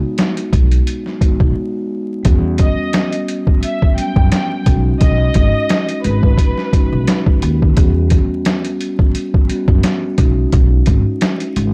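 A mellow, soft-mallet vibraphone opens this soulful boom-bap hip-hop excerpt with a rootless Emaj7, its ringing tone given a boxy, cassette-tinged colour, before a muffled, pitched-down sampler-style kit with a thumpy kick and overdriven grit arrives up front alongside a woody, pizzicato upright bass. After a short break at 1.6 seconds, the harmony settles into an Em6 to B6 progression, and from 2.6 to 7.2 seconds a lush, warm violin section carries a smooth, vibrato-rich melody treated with analog delay. The whole sound is dry and gritty, with transformer saturation and a bed of vinyl crackle.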